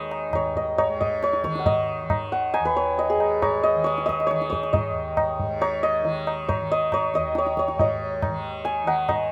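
A hammered, shimmering santur carries the melody up front from the first moment, set over the softly plucked, buzzing drone of a low tanpura in this longing, solemn passage of Hindustani classical music in raga Malkauns. Close, dry, low-tuned tabla with a short ring joins at 0.1 seconds, keeping a seven-beat cycle as the pace gradually quickens. Light reverb lends the whole ensemble a gentle glow in this brief section cut from a longer performance.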